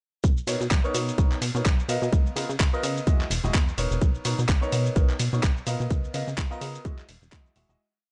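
A digital ambience, rolled off above 11 kHz, frames this joyful, funky disco house piece at 127 BPM in B major, where a punchy four-on-the-floor electronic kick sits up front beneath a gritty sampler-style kit of shaker, clap, ride and open hat, an octave-jumping plucky analog bass pumps against the sidechain, and a clear grand piano with phaser and 12-bit grit plays dotted-rhythm chords through Bmaj9, C#13 and Emaj9 before a fade-out from 5.3 seconds.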